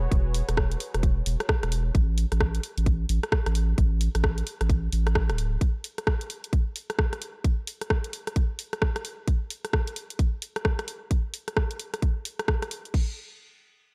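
Soulful and sunny, this two-step UK garage excerpt at 131 BPM swings in E mixolydian as a smooth, detuned sawtooth pad with chorus, tremolo and sidechain pumping holds an E69 chord until 1.9 seconds, a deep, saturated sine sub bass sits up front until 5.6 seconds, and a tight, tape-warm electronic kick pairs with a layered garage kit of crash, hi-hat and rim click through to 13.1 seconds, all within a dark digital ambience.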